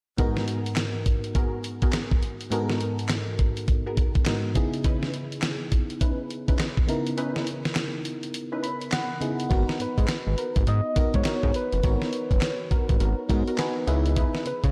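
A glassy, bell-like FM electric piano anchors this slick, punchy new jack swing excerpt, its vintage tone warbling through chorus and slapback echo as it lays down rich minor ninth chords and adds fills along the way. Beneath it, a gritty sampler-style drum kit sits up front with a thumpy kick, fat snare, hi-hat and handclaps, compressed and swung in a loose R&B groove. A dark, detuned polysynth punctuates the groove with funky sawtooth stabs, colored by chorus, slapback echo, digital delay and a moving notch. At 9.5 seconds a thick, saturated analog bass arrives with a filter pluck and an evolving, sustained tone, and a round, gentle keys-like synth lead follows at 9.8 seconds with a touch of vibrato. The mix carries a big arena feel inside a moderate concert hall reverb, with lossy compression artefacts.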